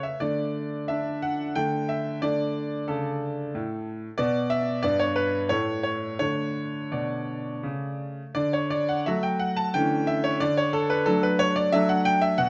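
Graceful and elegant, this brief cut from a longer classical-period piano sonatina unfolds in 3/4 with a free, rubato feel, played by a solo grand piano with a brilliant, vintage tone and long sustain, set up front in a moderate recital hall reverb. The piano spans from G2 to A5 throughout the 12.5 seconds, with a second section arriving at 8.4 seconds that settles onto D major harmony colored by an A7 over D before returning home.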